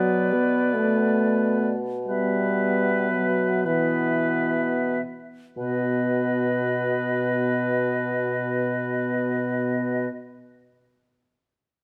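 Classical music: a slow, elegiac wind quintet movement in a rubato 6/8, cut from a longer piece. Its yearning harmony moves from Bm to Em/B, then settles on a B chord at 5.6 s after an opening stretch that slows down. The pure silver flute carries the melody with vibrato, a distant oboe holds a second line, a clear clarinet sits in the background of the accompaniment, a punchy French horn stands slightly forward in the accompaniment, and a mellow bassoon anchors the bass, all captured by close, detailed microphones in a moderate recital hall reverb with a 1.4 s decay.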